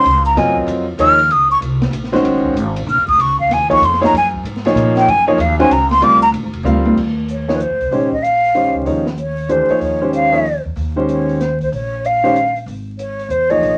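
A swung 3/4 pulse at 190 BPM drives this searching, hypnotic modal jazz excerpt: the breathy, hollow silver concert flute sits up front with vibrato and tongued notes, soloing over a Gbmaj9 in Gb lydian. A clear, intimate grand piano with audible action noise, growly pizzicato upright bass and a dark, smooth acoustic drum kit with boomy kick and dark cymbals accompany it. A drum fill at 6.6 seconds leads into an Eb13sus4 passage in Eb mixolydian from 7.0 seconds, all set in a small room under a layer of vinyl crackle.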